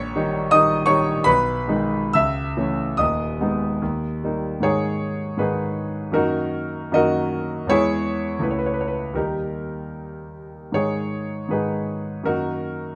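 A clear concert grand piano carries this passionate, bittersweet romantic character piece entirely on its own, ranging from a deep bass at D#1 up to E6. Set in G# minor and tuned to A4 = 438 Hz, the music moves in 2/4 at a flexible 66-84 BPM, with rubato shaping the phrasing throughout. The opening phrase begins on dominant harmony, passes through G# minor and A, and comes to rest on a D# chord, and a new section begins at 4.6 seconds, where G# minor alternates with E, A and D# chords. The notes have an open, short-sustained quality, and close, detailed microphones place the instrument up front within light reverb. This 13-second passage is cut from a longer piece, so it ends mid-thought on a D# minor chord at 12.3 seconds.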